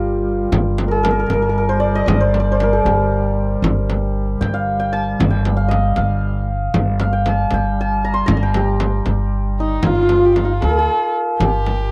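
A shimmering, ringing hammered santur leads up front over woody, thumpy pizzicato upright bass and a mellow duduk drone with scooped notes, the small, bright frame drum joining at 0.5 seconds, in this longing, hypnotic Persian modal piece in 6/8 at 77 BPM in G dastgah shur, where a dark bowed kamancheh with vibrato and portamento enters at 9.6 seconds as the duduk falls away at 9.9, all in a dry, close 1970s-style studio sound with light reverb, cut from a longer piece.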